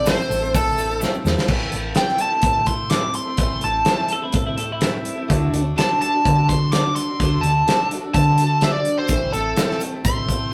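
A bluesy overdriven lead guitar sits up front with a dark, distorted tone and a slapback echo, carrying the melody from A4 up to D6 and taking a solo from 1.5 seconds to the end of this wistful, dusty folk rock and heartland rock excerpt in A dorian at 126 BPM. Beneath it, a picked steel-string acoustic guitar plays its accompaniment with audible finger squeak, while a round, amped hollow-body short-scale bass plays fingered lines. A loose indie drum kit with a fat snare, tight kick and rolled-off top drives a straight 4/4, marking the move into the solo with a fill from 1.0 to 1.5 seconds. A very quiet string section adds reedy, gut-string chords with light vibrato at the opening and again from 9.1 seconds, joined each time by a grainy tube shaker in the background. A bright, twangy twelve-string electric guitar briefly adds a clean second line between 4.1 and 5.6 seconds as the harmony moves from Am to D, before returning to Am at 9.1 seconds, all captured as a rough rehearsal-room recording in a wet reverb.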